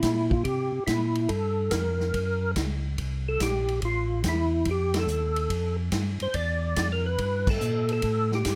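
From the first beat, a percussive tonewheel organ carries a fat, bluesy melody in its upper-middle register, while a second, mellow tonewheel organ lays down a round, dark bass line, both clean and up front with chorus vibrato and a slow rotary speaker. A swinging big-band drum kit sits a little further back, with ride, hi-hat, crash, a medium-tuned snare and a punchy kick heard in a natural, big-room sound. This short soul jazz organ trio passage swings at 142 BPM over chords moving from C7 through Fmaj9 and F9 to A7, with band accents at 4.9 and 7.4 seconds, captured by close, detailed microphones with light reverb.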